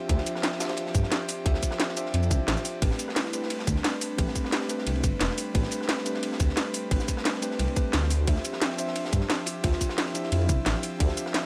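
A straight 176 BPM liquid drum and bass groove in A minor drives this lush, dreamy excerpt, built on a tight, up-front electronic kick, a layered drum and bass kit with a cracking snare, metallic hats, ride, rim click and cabasa, and a gritty, saturated breakbeat kit with dark cymbals sitting in the background. A deep, rumbling detuned saw bass sits up front beneath a mellow tine electric piano trailing dub echo and an airy, breathy pad with slow-attack chords, cycling through Dm11 and Am11. A hollow, woody clarinet-like synth lead with vibrato and dub echo drifts in softly at 3.2 and 8.6 seconds, all set in light digital ambience.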